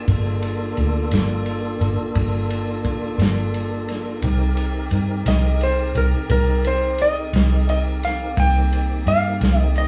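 A round, foam-muted electric bass sits up front in this brooding, soulful slow blues excerpt at 58 BPM in 12/8, moving from Gm7 to Cm7 beneath a fat tonewheel organ that holds sustained chords through a slow rotary speaker with light overdrive, chorus vibrato and key click, while a smooth soul drum kit with a tight kick, medium-tuned snare and dark ride cymbal plays in a small room and a clean, warm lap steel guitar slide melody enters at 5.3 s.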